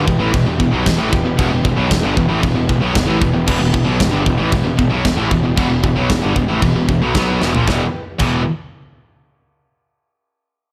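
A big-room studio sound puts a tight acoustic metal kit up front, its brilliant cymbals, china and crash riding over a medium-tuned snare, tight kick and toms, with a fill at 7.4 seconds. This heavy, dark metal cut moves at 114 BPM in E minor, built on three distorted guitar riffs (a very quiet compressed one, a very quiet double-tracked fuzz one and a picked one sitting in the background) over a growly, overdriven electric bass. A close, floating string section holds soft-attack bowed chords in the background, stopping at 7.9 seconds just after the harmony shifts from Em to E5 at 7.7.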